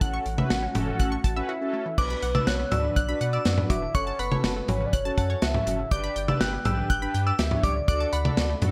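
A bright 1980s-style digital production with light reverb frames this cool, melancholic synth-pop excerpt, where a tight, up-front drum kit with gated reverb and a round, deep analog bass anchor a soft octave-layered synth lead, mellow brassy synth brass with chorus and phaser, and detuned analog pluck arpeggios. A swirling phased pad sustains chords only through the opening 2.0 seconds, ending after a brief break that starts at 1.5 seconds. At 2.0 seconds a glassy, crystalline FM bell enters with a warbling second line over chords moving from Bm through F#m and G to D.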